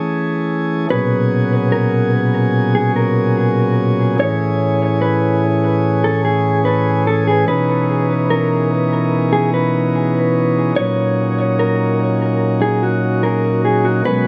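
Soaked in echo-chamber reverb, this hazy, spacious hip hop excerpt moves with a half-time feel. A chamber organ, up front with a full principal chorus and audible chiff, holds sustained chords through a low-pass filter, moving from Amaj7 to G#m11 at 0.9 seconds, back to Amaj7, and on through C#m9 and D#m7. A dark, clean, compressed electric guitar enters at 0.9 seconds with a fingered melody trailed by dub echo, sitting lower in the mix than the organ.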